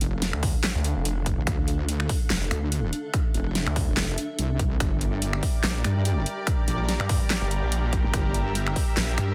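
At 144 BPM in a half-time 4/4 with a light swing on the sixteenths, this heavy wobble dubstep excerpt sets a menacing, chaotic tone in D minor, moving from Dm to Gm at 4.8 seconds. A punchy, tape-warm electronic kick enters at 0.4 seconds alongside a dubstep kit that sits up front with a huge snare, metallic hats, finger snaps and handclaps, all washed in studio reverb. Two up-front basses share the low register: a wobbling, heavy sawtooth bass thickened by chorus and overdrive, and from 0.3 seconds a snarling, growling distorted saw bass with a moving notch that adds bite. Behind them, a cloudy, blurred granular pad drifts in the background with built-in reverb and sidechain pumping. At 4.8 seconds a lush, warbling unison pad arrives with bright, vintage-sounding chorused chords that also pump against the beat. The master is dense and heavily limited, with a digital ambience around the whole mix.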